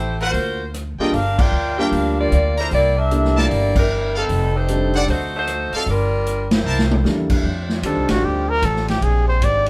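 Big band swing with a brassy, joyful mood, cut from a longer piece: a bright, up-front saxophone section carries the melody over woody pizzicato upright bass and a roomy drum kit with a punchy kick, while a brilliant trumpet section adds soft-attack stabs and a clear baby grand piano supplies open, long-sustaining accompaniment. After a drum fill at 6.7 seconds, a tight saxophone section holds warm, vibrato-laden chords in the background from 7.4 seconds. A solo trumpet with light vibrato takes the lead at 7.9 seconds, all captured with the band playing live in one studio room.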